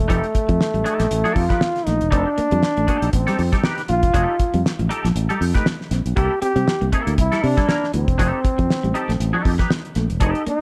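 A dark, lightly reverberant small-room sound frames this playful funk excerpt at 119 BPM with a swung sixteenth feel, where an up-front trombone carries the melody over round, punchy fingered bass, a cloth-damped drum kit with fat snare and gritty, rolled-off top, a bright, twangy guitar with ensemble chorus, and a clean, dark guitar riff tucked in the background, all moving from F9 to C13 at 6.2 seconds and back to F9 at 8.2 seconds.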